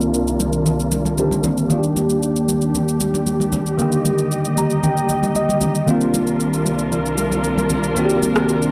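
Late-night and soulful, this amapiano excerpt in C minor moves at 115 BPM in a straight 4/4. A bright, bell-like tine electric piano sits up front with the accompaniment, colored by a phaser and a low-pass filter, and it breaks into a short fill at 4.3 seconds. Beneath it, a lush studio string section holds sustained bowed chords with vibrato and portamento, expressive yet somewhat distant and also shaded by a low-pass filter. An electronic shaker and rim click carry the drum part, while damped, thick-skinned congas played with soft hands enter at 0.4 seconds and stay in the background. The harmony moves from Cm11 to Ebmaj7 and back to Cm11 under a filter sweep that spans the whole passage, all set in light small-room reverb with a dry, gritty hardware character.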